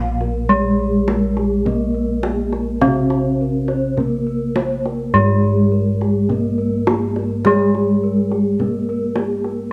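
Round, dark bronze bossed gongs sit up front in this serene, ceremonial Javanese gamelan excerpt at a slow 52 BPM, carrying the bass beneath a mellow, shimmering bronze metallophone melody and its softer metallophone accompaniment, while a bright metallophone struck with a horn mallet spins higher arpeggios and a tight, soft-handed kendang keeps time, all set in a dark production with moderate recital-hall reverb.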